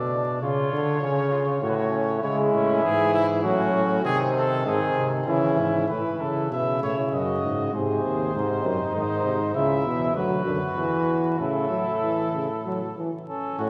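A close-miked trumpet with light vibrato and a soft attack carries the melody of this stately, joyful classical canzona for brass ensemble, moving at 98 BPM in 3/4 with the key settling into A major from 9.5 s. A distant, roomy flugelhorn sings the second line, a smooth-topped trombone enters at 2.2 s with mellow accompaniment, and an up-front bass trombone anchors the bass with a warm tone. The imitative writing unfolds in a wet church reverb, dusted with vinyl crackle, in this short cut from a longer piece.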